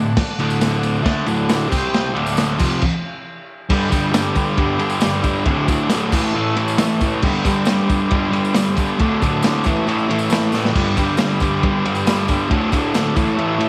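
A bright, fuzz-drenched electric guitar riff and a buzzy, overdriven combo organ open this raw, swaggering garage rock cut, with the picked guitar double-tracked, compressed and up front while the organ's sustained chords with light vibrato sit in the background. At 0.2 seconds a crunchy acoustic drum kit comes in, saturated and gritty with a tight kick, a medium-tuned snare and dark, rolled-off cymbals. A jingly tambourine, close and dry, rides low in the mix alongside it. The band hits a stop at 2.8 seconds before launching into a new section built on a steady straight four-beat groove, and the vintage organ slips in a short fill just before the drums take a fill at 10.5 seconds. An echo-chamber reverb gives the whole garage-band sound a moderate sense of space.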